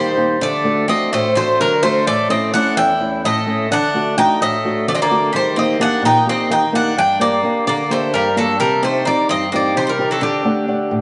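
Soaked in a long echo-chamber reverb with a softened top end, this short cut from a longer Greek folk piece moves in a tense, dramatic 7/8, with a bright, metallic double-strung bouzouki carrying the melody up front, a second picked bouzouki playing a lower line through tape echo, and a dark, boxy fingerpicked old ladder-braced acoustic guitar giving close-sounding accompaniment over chords that shift from D and A to Eb, Gm and Cm before returning to D.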